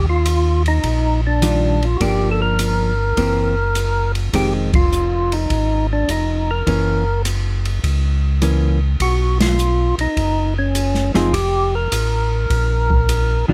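A fat, lightly overdriven tonewheel organ carries the melody in this greasy, swinging soul jazz organ trio, its third-harmonic percussion and vibrato turning through a slow rotary speaker up front in the mix. Beneath it, a second tonewheel organ plays the bass line with a mellow, round tone, clean and dark, with audible key click and the same slow rotary motion. A hollow-body electric guitar joins at 1.4 seconds, picked and compressed, adding dark, clean accompaniment. The acoustic jazz kit sits in an airy small room, with dark cymbals, a medium-tuned snare, a boomy kick and ride and hi-hat keeping a polished swing. The band hits accents together at 4.6 and 9.3 seconds as the harmony moves from Ebmaj9 through altered and minor seventh chords in this close, detailed, nearly dry excerpt cut from a longer piece.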